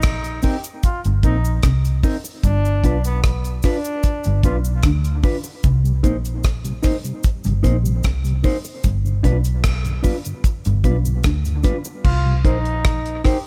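A steady, straight 75 BPM 4/4 pulse in C minor drives this deep, heavy dub reggae excerpt, where a dry, up-front drum kit with dark cymbals and a tight kick joins a round, punchy, foam-muted electric bass, a background cabasa, two dark, clean electric guitars (one comping, one playing a low riff with ensemble chorus) soaked in dub echo, a soft, flute-like tonewheel organ with chorus vibrato and a slow rotary speaker entering at 5.8 seconds, and a bright, distant trombone line that drifts through echo before returning at 12.0 seconds over the Cm7 to G7 changes.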